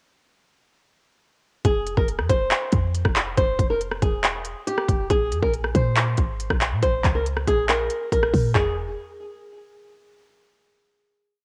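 A dark, fingerpicked flamenco guitar loops a brooding, melancholic melody up front, colored by cassette tape and tape echo, over a half-time trap beat of hard-clipped kick, crisp hi-hat, handclaps, rim click and toms and a deep, boomy 808-style bass with long sliding sub-bass notes that follow the kick, all in F harmonic minor at 139 BPM, moving from Fm to Bbm before a final chord at 8.6 seconds.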